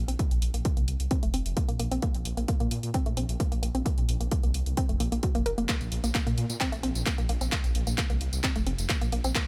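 A thick, menacing detuned saw bass sits up front from the first moment, its saturated, beating tone pumping against the sidechain in this dark, hypnotic slice of driving peak-time techno at 131 BPM in a straight 4/4, tuned to A4 = 441 Hz over a Bb5 chord. A woody, wave-folded pluck riff with a short decay, chorus and dub echo pumps along with it. A heavy, layered electronic kick and a punchy, tape-warm analog drum machine with handclaps, hi-hat and tambourine drive the groove in a dry, close sound cut from a longer piece.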